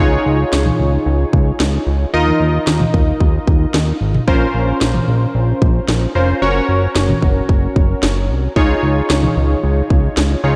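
Detuned sawtooth keys with a round, bright tone and a chorus sheen open this short synth-pop fragment, cut from a longer piece, alongside a fat, saturated analog bass that blends sawtooth, square and sine waves with a wave-folded edge. At 0.5 seconds an electronic house drum kit arrives with a punchy kick, a cracking snare and toms; its layered, produced sound was re-recorded in a large room. The keys, bass and drums all sit up front, and both the keys and the bass carry a filter sweep. The keys play an accompaniment of fast-attack, decaying chords through Dbadd9, Ebsus2, Bbmadd9 and Gb before returning to Dbadd9, while the bass holds long, mellow notes. A lush hall reverb soaks the whole mix, giving this straight-feel passage a dreamy, nocturnal and melancholic mood.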